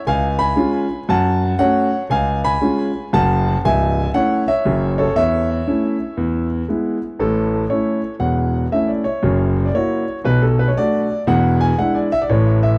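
A solo concert grand piano opens straight into an exuberant, swinging stride passage in A major at 118 BPM, a short stretch cut from a longer jazz piece. The first section moves through C#7 and F#m harmonies before settling on A/E and E, and at 7.2 seconds a second section begins on A, passing through F#7 and Bm7 to close on E7 at 11.3 seconds. The piano spans from deep bass notes up to the upper middle register, and its tone is intimate and boxy, with long sustain and audible action noise adding to the close, physical presence. A tape echo colours the instrument, which sits up front in a dry, close recording with a 1970s studio character and only a light touch of reverb. The swing on the eighth notes gives the whole 12.8-second passage a buoyant, dancing lilt.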